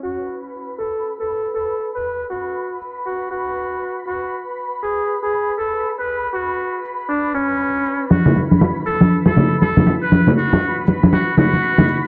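Deep house at 119 BPM in 4/4 with a swung sixteenth-note feel, this late-night, warm passage is cut from a longer piece. A trumpet with a metal mute carries the melody, sitting up front with a buzzy, raspy, growling tone, jazz-style vibrato and scooped notes that give it a vintage solo character. Above it, an analog string pad holds a silky, sustained texture with a slow attack, detuned sawtooth shimmer, a moving notch and ensemble chorus. A very quiet cabasa adds a grainy, bright rustle throughout. At 8.1 seconds low-tuned congas enter up front, ringing and saturated under soft hands, until 11.9 seconds. The mix is dense and heavily limited, bathed in a moderate plate reverb, with a low-pass filter sweep running across the whole 12.1 seconds.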